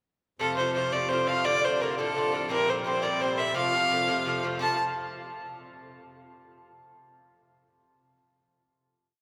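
Celtic folk jig in F major at 114 BPM in 6/8, lively and rollicking, where a smooth, up-front fiddle with light vibrato carries a motif-based melody in period phrases over metallic, double-strung Irish bouzouki strumming open chord shapes through F, Dm, C7 and back to F, while a reedy, shimmering musette accordion holds a close, dry drone underneath, all set in the long cathedral reverb of a church or concert hall before closing on a final chord at 4.6 seconds.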